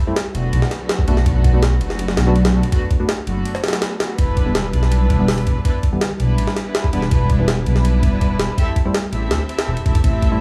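Opening on a deep, mellow chord stab with chorus and dub echo sitting in the background, this frenetic yet nostalgic drum and bass excerpt in E minor at 164 BPM quickly adds a gritty, pitched-up sampler-style jungle kit with a thumpy kick, high-tuned snare, hi-hat and ride up front, a rumbling detuned saw bass with tube saturation, and smooth bowed strings with light vibrato holding sustained chords over Am7, Bm7 and Em7, while the kick drops out briefly from 3.5 to 4.2 seconds in a small, lightly reverberant digital room.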